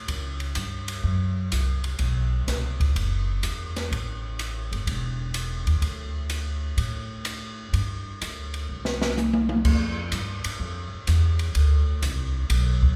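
Big band swing jazz in an energetic, joyful swung 4/4 at 126 BPM, this excerpt from a longer piece pairs a woody, dark pizzicato upright bass on steel strings with an acoustic jazz kit of boomy kick, medium-tuned snare, hi-hat, ride, crash and toms, both placed up front inside a moderate concert hall reverb, with a drum fill from 8.7 to 9.6 seconds leading into a new section.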